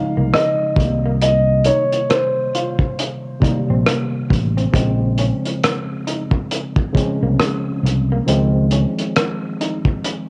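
A sultry neo-soul R&B fragment opens with an up-front grand piano melody on cassette-toned tape echo that drops away at 2.9 seconds, over a worn, slightly out-of-tune electric piano with light overdrive and a warm, slightly broken-up picked guitar line in the background, while a punchy fingered bass and a muffled, cloth-damped drum kit of tight kick, hi-hat and rim click join almost at once, moving through Bbm9, Cm7 and Dbmaj9 in a lo-fi small-room home recording with a soft touch of reverb.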